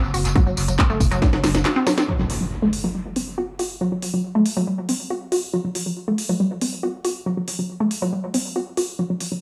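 Echo-heavy and cloaked in moderate spring reverb, this dark, driving peak-time techno excerpt runs at 139 BPM in a straight 4/4, set in F# locrian. A deep, thick sub bass with tube saturation and sidechain pumping opens the cut, joined shortly after by a heavy, layered electronic kick, and both drop out within the first two seconds. Up front, a juicy, squelchy blip pluck carries the riff between F#3 and F#4, its detuned, resonant tone thickened by chorus and tape echo and pumped against the beat. The drum kit brings a cracking snare, smooth hats, handclaps and tambourine with a tape-tinged, small-room character, the hats and percussion pumping and trailing dub echo. A drum fill leads into the second section at 2.1 seconds, where a faint electronic impact lands and a filter sweep begins on the pluck, running to the end.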